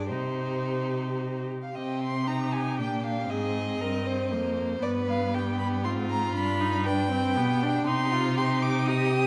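A string quartet opens together in C minor, with the first violin carrying a rich, smoothly bowed melody high above the second violin's close inner line, while the viola adds expressive, soft-edged accompaniment with portamento and the clear cello sits distant yet up front on the bass. This quick classical-period movement in 3/4 at 118 BPM feels urgent and restless under its rubato, moving from a short opening section into a longer passage from 1.8 seconds that passes through Abmaj7, Fsus4 and G before returning to C minor near 7.9 seconds. A recital hall's wet reverb and a layer of vinyl crackle surround this fragment of a longer piece.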